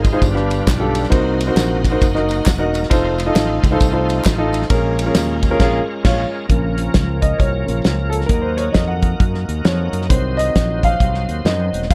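The recording is close and dry, with little reverb and the drums and piano placed up front. This excerpt of uptempo gospel in Bb minor moves at 134 BPM in 4/4 with a swung eighth-note feel, tuned slightly flat of standard pitch, and its mood is solemn and fervent. A small-room soul drum kit with a fat snare, tight kick and dark cymbals drives the groove alongside a punchy, direct fingered electric bass and an intimate grand piano whose action noise is audible. A shouting, lightly overdriven tonewheel organ holds sustained chords through a slow rotary speaker and chorus vibrato, with key click, while a tube shaker and group handclaps sit in the background until 5.5 seconds. After a band accent from 5.6 seconds, the piano takes a solo from 6.5 seconds as the harmony moves from Bbm through Ebm to Cdim.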